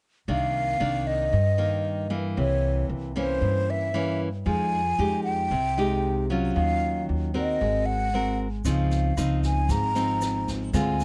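A breathy, hollow concert flute carries the melody up front over fingerpicked nylon-string guitar with audible finger squeak and a woody, thumpy pizzicato upright bass in this intimate, wistful bossa nova excerpt in C minor at 115 BPM, where brushed jazz drums and a grainy tube shaker in the background join at 8.6 seconds, all captured with close, detailed microphones and little reverb.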